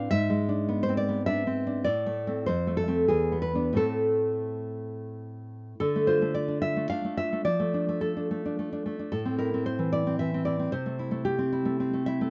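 A fingerpicked nylon-string guitar, full-bodied and up front with the warmth of fresh strings and an occasional finger squeak, carries this wistful, intimate romantic solo piece in 3/4, moving with a rubato feel between 86 and 116 BPM through A minor chords like Am, F and E7 before shifting to D minor at 5.8 s, all in a rough home demo mix with light reverb, cut from a longer piece.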